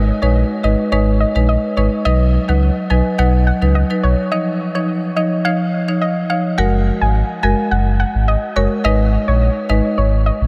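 A straight, bouncy dancehall groove in 4/4 carries this sunny excerpt, with a deep sine sub bass doubled at the octave sitting up front beneath a woody, bright marimba accompaniment struck with medium hard mallets. Above them, a soft, round pluck carries the melody from 0.2 s, its mellow tone colored by chorus and analog delay, while the harmony moves from G#m through B and C#add9, with a break from 4.3 s. The whole mix is dreamy and soaked in a huge ambient reverb, and the tune shifts to F#add9 at 6.6 s before returning to G#m.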